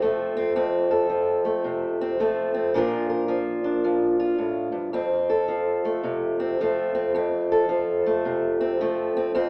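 A fingerpicked steel-string acoustic guitar opens this short blues excerpt alone and plays through its full 9.5 seconds. The mood is swaggering and soulful, carried by a swung eighth-note feel in common time. The guitar has a dark, boxy parlour character and sits up front, ranging from its low bass strings up into the middle register. The harmony moves from F to Bb at 2.7 seconds and returns to F at 4.9 seconds. A wet recital-hall reverb surrounds the playing, and the overall sound has the narrow quality of a small speaker.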